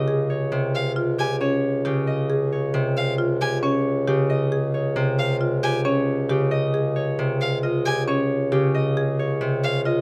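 A ringing concert harp melody opens over fingerpicked, up-front Celtic harp accompaniment and a mellow bassoon holding a low Db bass in this propulsive, bright minimalist classical pattern piece at 135 BPM in 5/4 and Db lydian, with woody, dry marimba arpeggios joining at 0.1 seconds and a rich, focused violin adding vibrato-laden bowed arpeggios high above from 0.7 seconds, all resting on a sustained Dbmaj9 in a close, detailed recording with light reverb.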